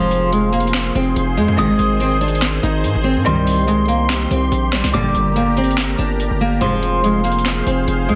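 Dark and melancholic, this half-time trap cut at 143 BPM moves through Fm, Ab, Cm and Gm as a fingerpicked nylon-string guitar melody with delay sits over a thumb-plucked, ringing Celtic harp, a mellow FM bell line with chorus and delay that stops at 7.4 s, an airy, detuned sawtooth pad holding chords, very quiet bowed string stabs that end at 7.0 s, a heavy, aggressive distorted 808 bass up front, and an overdriven trap kit of sharp snare, metallic hi-hats, handclaps and rim clicks carrying 12-bit sampler grit, set in light small-room reverb and a dense, heavily limited master.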